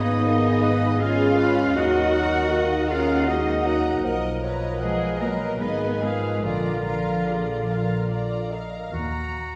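Mellow French horn chords stand out in this yearning, elegiac classical fragment in Eb minor, a rubato 3/4 at 70-80 BPM, where a distant violin section carries the melody in the background while a second, smooth violin section, a clear oboe, an airy, hollow flute ensemble and a very quiet clarinet weave second lines, a dark bassoon and a lush viola section accompany, and cello and double bass sections anchor the bass, the ensemble heard from further back in a wet scoring-stage reverb.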